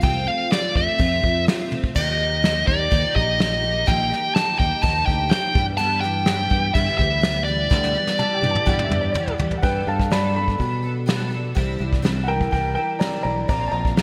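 Hopeful and warm, this folk rock and heartland rock passage, cut from a longer piece, moves in a straight 4/4. An up-front, dark and smooth electric lead guitar carries the melody with overdrive and digital delay until 9.3 seconds, over a shimmering, octave-doubled twelve-string acoustic guitar that is picked and thickened by analog chorus. A punchy fingered electric bass and a soft brush drum kit with a punchy kick and medium-tuned snare hold the ground, with a brief drum fill early on and another near the close of the first section. A woody upright piano with digital delay joins at 8.2 seconds and takes a solo from 9.6 seconds, as the chords shift through Gadd9 and Cadd9 before landing on Bbsus2. A lush hall reverb and bright 1980s-style digital production give the mix a glossy, spacious finish.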